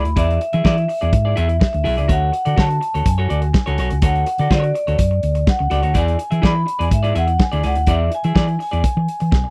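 A straight 4/4 disco groove at 124 BPM drives this joyful, danceable clip cut from a longer piece, where a dark, tight-kicked soul drum kit and a round, up-front fingered hollow-body bass anchor a clean, picked semi-hollow guitar accompaniment and a ringing, metallic vibraphone melody played with medium mallets, moving over E7 and Dmaj7 chords in a dry, close 1970s-style studio sound before a drum fill at 9.3 seconds.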